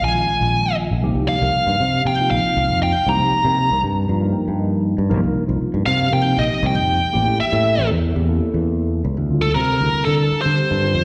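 A bluesy, overdriven lead guitar with slapback echo takes an up-front solo until 9.2 seconds in this funky, slick electric jazz fusion excerpt at 118 BPM, over a mellow tine electric piano, phased and echoed, that adds a brief fill at 4.1 seconds, and a growly, bright fingered bass, all heard from a live gig through the venue's PA with recital hall reverb as the chords move from Eb9sus4 and Cm7 through A7b9 to Dm9.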